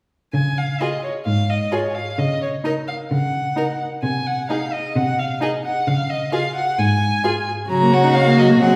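A bowed violin carries the melody up front, its single voice rich and smooth with an even vibrato, in this spirited, cheerful string quartet movement in the classical style, cut from a longer piece. The cello opens alongside it at 0.3 seconds, supplying a steady, rich bass line that also sits close to the listener. At 0.8 seconds a second violin adds a clear, even inner line, while the viola fills out the harmony with a rich, more distant accompaniment. The quick, straight four-beat pulse and bright major harmony keep the mood buoyant through to 8.8 seconds. The quartet is heard from further back in a recital hall, with a lush reverb lending the blend a generous, ringing spaciousness.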